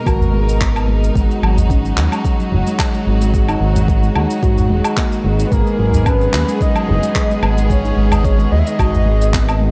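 A dark, bowed chamber string section opens this hypnotic, mystical organic downtempo excerpt in G# minor at 110 BPM with sidechain-pumped sustained chords, soon joined by ringing handpan arpeggios through a low-pass filter and tape echo, an up-front, smooth gliding synth bass, an overdriven deep electronic kick, overdriven electronic woodblock, shaker and handclaps, and a small, dry udu in the background, before a breathy, flute-like synth lead with subtle chorus carries the melody from 5.5 seconds, all in a dark production with light reverb.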